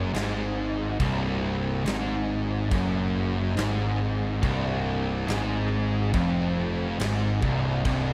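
A growly, overdriven fuzz bass sits up front from the first moment of this heavy, sludgy stoner and doom metal fragment at a slow 70 BPM in 4/4, holding down the low end on an Fm/C chord beneath a low riff from a bright, double-tracked overdriven guitar and two thick fuzz guitars, one warm and one dark, set in the background, while a big, natural-sounding rock kit with a punchy kick, medium-tuned snare and crash cymbals joins at 0.1 seconds from further back, all captured fairly dry in a cut from a longer piece.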